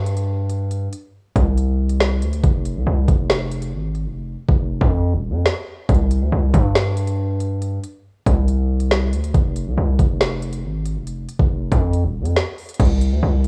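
A distorted 808-style bass opens this cold, tense drill excerpt at 0.0 s, heavy and aggressive, its sine tone roughened by a noise layer, with a fast attack and a decaying tail that reaches down to Eb1. At 0.1 s the electronic drum kit arrives up front, an overdriven kick knocking beneath a woody snare, crisp hi-hats and a crash cymbal. The groove sits at 139 BPM in 4/4 with a half-time feel, rooted in C minor. The hi-hats drop out between 4.2 and 5.9 seconds, leaving kick, snare and bass to carry the pulse before they return. Over the whole recording hangs a worn, cassette-like character, with a warbly pitch drift and studio reverb giving the hard-hitting beat a faded, unsteady edge.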